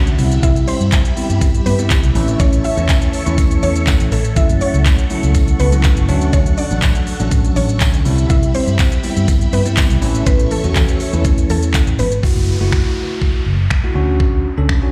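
Dance-pop at 122 BPM in A major, summery and upbeat, this clip cut from a longer piece opens on a drop carried by an up-front electronic kit with a knocking kick, crisp hats, snaps, claps and shaker, a dark, foam-muted fingered bass, and bell-like tine electric piano chords moving through Cmaj7, A, F#m7 and Dmaj7, the bass and piano pumping with sidechain. Above them a woody FM synth pluck carries the melody through chorus and dub echo, while a swirling, warbling string machine holds sustained chords through ensemble chorus and phaser, and a jingly tambourine sits very quiet in the background. At 12.2 s the strings, pluck and tambourine fall away and a downlifter sweeps in over the continuing groove, all set in a large studio reverb as if played on a big sound system in a bare room.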